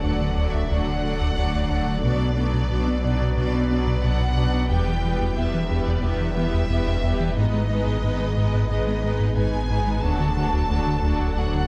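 A cinematic hybrid of orchestral strings and electronics, this brooding, relentless cue moves at 90 BPM in a straight 4/4 through D, Bm, Em and G#m before returning to D at 10.0 seconds. A lush violin section carries the melody with a smooth, focused top, while a second violin line adds expressive portamento and a close viola section fills the middle. Underneath, a round, wave-folded analog bass riff leads a dark low end of pure sine sub bass, a background cello section and a very quiet, distant double bass section, as a glassy FM pad with ensemble chorus sustains chords and a moderate scoring-stage reverb holds it all together.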